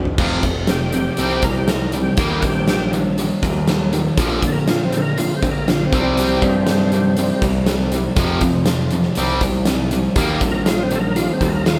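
Classic rock at 120 BPM in C minor, this swaggering, gritty excerpt opens on a drum fill from a huge, punchy arena kit with bright cymbals, as a growling overdriven bass and two bright, picked distorted guitars churn a riff over F5, C5, Eb and Bb chords while a thick, overdriven tonewheel organ with slow rotary speaker and chorus vibrato solos from 0.7 to 7.5 seconds and returns at 10.5 seconds, all played live in one room with moderate large-studio reverb.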